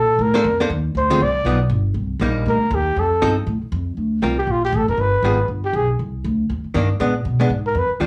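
Late-night and moody, this short excerpt of small-group swing and bop races along at 238 BPM in 4/4 with a swung feel, as a mellow, forceful trumpet carries the melody with scooped notes and a smooth top, its solo voice up front from the start. An acoustic upright bass, woody and thumpy, is plucked beneath it, while a dark, clean, compressed hollow-body archtop guitar enters at 0.3 seconds with picked accompaniment through chords like Bbmaj9, G7b13 and Cm9. The dry, gritty sound carries cassette tape and transformer saturation, with light reverb and a hint of studio ambience.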